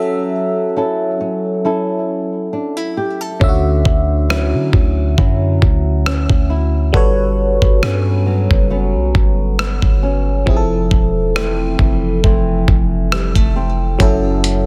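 Tender and romantic, this slow contemporary R&B fragment is cut from a longer piece and moves with a gentle swing. An FM electric piano carries the accompaniment from the start, its glassy, bell-like attack shimmering through chorus and phaser, while a dark, boxy flamenco guitar plays thumb-plucked arpeggios washed in delay. At 3.4 seconds a deep, boomy 808-style bass arrives up front alongside a dusty, sampler-style drum kit of hi-hat, thumpy kick and rim click, its gritty sound re-recorded in a large room with soft clipping on the snare. The harmony drifts through lush extended chords, from F#m7 to Dmaj9, Gmaj9#11 and Fmaj7 before returning to F#m7 at 14.0 seconds. Digital ambience surrounds the parts, and the master is dense and heavily limited in a modern style.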